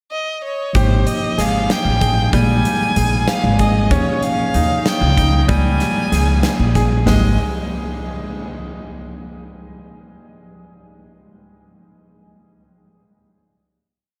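An up-front, woody upright bass anchors this intricate, bright progressive instrumental with a thumpy, syncopated pizzicato riff in 5/8, moving at 190 BPM counted in eighths with a straight feel. A rich, focused violin opens alone at 0.1 seconds with a short pickup, then carries a bowed, motif-based melody of call phrases, its vibrato and smooth top trailed by delay. From 0.8 seconds a brilliant grand piano adds an ostinato of arpeggios with long sustain, audible action noise and its own delay, while a clean, bell-like tine electric piano, present since 0.7 seconds, sits in the background with held quartal chords. Entering at 0.7 seconds, a huge arena drum kit drives the odd-meter groove with a punchy kick, medium-tuned snare, hi-hat and toms in a pumping hall sound. The harmony moves through Ab5, Bb5, Eb7 and Db6 before landing on a final Ab5 chord at 7.1 seconds, with the mix soaked in dreamy cathedral reverb.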